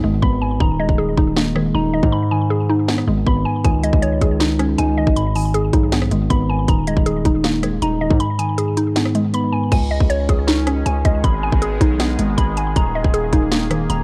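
This short cut from a longer piece has the worn, warbly sound of old cassette tape, with a drifting pitch and a dry, close feel. It is a melancholic, menacing trap beat in a half-time feel. A woody, round mallet-like synth pluck sits up front, playing arpeggios with a vintage, FM-tinged tone through chorus, delay and a low-pass filter. Soft electric-piano-like keys add gentle, mellow accompaniment under it, and a heavy, aggressive distorted 808 bass anchors the low end. The trap kit is crisp and forward, with a hard-clipped kick, sharp snare, hi-hats, rim clicks and crash, and the kick drops out briefly before 9.7 seconds. At that point the keys stop and an airy, evolving pad of detuned sawtooth chords rises in with a resonant filter swell, carrying the minor, suspended progression to the end.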